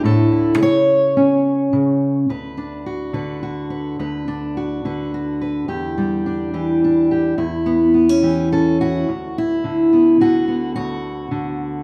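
Peaceful and nostalgic, this short folk excerpt features a solo fingerpicked steel-string acoustic guitar in a straight 3/4, its dark, full-bodied tone and fresh strings placed up front. After a brief opening, the harmony settles on D6 at 2.3 seconds, moves through Em7 and Em69, and returns to D6 at 9.1 seconds. The guitar sits in a large studio with a wet reverb that lends the sound a roomy, live-in-one-space glow.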